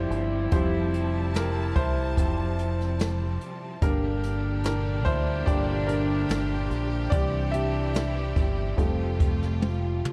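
A warm concert grand piano leads this heartfelt, hopeful pop ballad, taking the solo with an intimate, natural tone, up front in the mix, where the action noise of the instrument is audible alongside its deep low register. Beneath it, a round, dark fingered electric bass sits close and direct, while a clear, focused studio string section holds sustained bowed chords with vibrato. A mellow, distant French horn section adds a second line in a classical style, its roomy sound carried further by a touch of delay. A jazz drum kit played with brushes enters at 0.1 seconds, pairing a boomy kick with a medium-tuned snare and rounding off with a fill from 9.6 seconds. The harmony moves from Fsus2 through Gm and C to Fadd9, and the small room ambience gives this fragment of a longer piece a dark, warm production.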